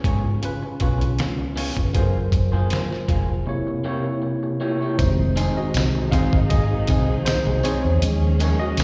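A barky tine electric piano, a twangy, slightly broken-up electric guitar riff, a round, foam-muted fingered bass and a muffled, overdriven sampler-style drum kit with a thumpy kick open this cinematic, bittersweet slice of lush 1970s-style soul at 79 BPM in F phrygian, the keys and guitar carrying slapback echo over a lightly swung 4/4 groove. After a break at 3.5 seconds, the electric piano takes a solo from 5.0 seconds as a bowed studio string section with vibrato and portamento and a jingly tambourine join in the background, and a very quiet soft-mallet vibraphone adds a ringing, metallic shimmer from 5.8 seconds. It sounds like a live gig heard through the venue's PA, with small room ambience and recital hall reverb.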